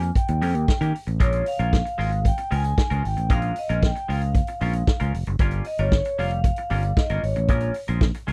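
Sultry and glamorous, this short disco excerpt sets a ringing, metallic vibraphone melody over punchy, up-front vintage drums, a growly overdriven fingered bass and a bright, clean semi-hollow guitar with subtle chorus, all captured in a dry, close 1970s-style studio sound as the chords move from Eb7 through Bbm7 and Gm7b5.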